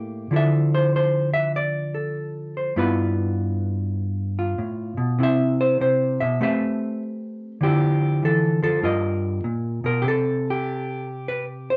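Relaxed and playful, this short solo jazz excerpt is cut from a longer piece and moves at 99 BPM in 4/4 with a swung eighth-note feel. A hollow-body electric jazz guitar carries everything alone, its clean, dark tone fingered and sitting up front, ranging from G2 to E5. The first 10.1 seconds run through a harmony of Dm9, G13, Cmaj7, Am9, Dmadd9 and G7alt, with the guitar soloing over the changes. At 10.1 seconds the chords drop away into a brief closing stretch that ends at 11.8 seconds. A light reverb gives the room a gentle, intimate air.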